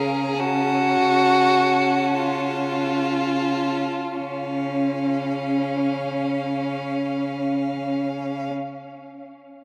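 Up front, a focused, vibrato-laden violin carries the second line beneath a quieter first violin's high melody, with a viola in the background and a smooth, distant cello bass, each bowed by a single player in this serene, rubato excerpt from a slow romantic string quartet movement in 6/8, their rich tone blooming in a vast cathedral reverb as the music slows through the opening 4.2 seconds before a new section begins.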